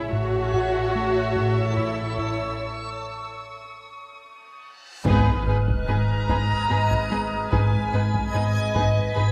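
Veiled, con sordino violins, violas, cellos and double basses open this ominous, tense suspense cue in 3/4, alongside a dreamy reversed texture holding sustained chords in its own built-in reverb. A rubbery square-wave bass riff sits loudest in the mix, while a high violin line hovers above and a bell-like celesta sits in the background. A huge reverse cymbal and sub drop arrive at 4.9 seconds, and at 5.1 seconds band-limited taiko drums and very quiet hard-mallet timpani strike an impact, all set in a moderate scoring-stage reverb in this cut from a longer piece.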